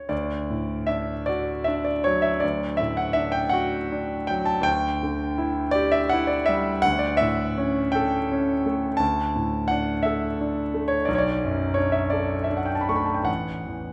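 Tender and dreamy, this romantic classical nocturne for solo piano unfolds in D major at a slow 50-59 BPM in a rubato 12/8, drifting over a D pedal through Em7/D and A7/D before settling toward Bm7 and an open A5. The concert grand sounds clear, intimate and up front, with deep bass reaching down to A1, a natural tone and audible action noise that brings the listener close to the instrument. A wet recital hall reverb surrounds the playing throughout this short section cut from a longer piece.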